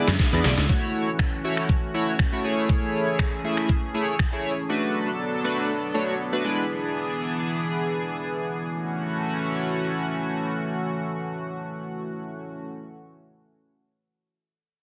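A straight 4/4 dance-pop groove at 120 BPM in F# minor opens with a drum fill, and a pop drum kit plays on until 4.3 seconds, its knocking kick, deep snare, crisp hats, finger snaps and shaker layered into an electronic, tape-warm sound re-recorded in a large room. A growly, overdriven slap bass punches in only briefly, along with a grainy, very quiet egg shaker, both heard between 0.1 and 0.7 seconds. A glossy, retro chorused polysynth carries the accompaniment until 6.6 seconds, built from pulse and sawtooth waves with a filter sweep and sidechain pumping. Alongside it a shimmering pulse-width pad, thickened by a sub octave and ring modulation, holds sustained chords with a slow attack through to the end at 12.7 seconds, moving through E7, F#m7, Amaj7 and Bm7. The heavily compressed, radio-style mix sits in a moderate digital room reverb, giving this cut from a longer piece a confident yet bittersweet mood.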